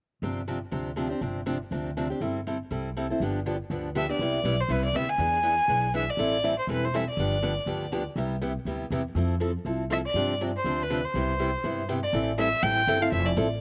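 A biting, nasal bowed violin with light vibrato enters up front at 4.0 seconds over a bright, boxy picked steel-string acoustic guitar with slapback echo and a woody, growly pizzicato upright bass in this lively, swinging fragment of acoustic string swing at 242 BPM in C major, recorded dry and outdoors.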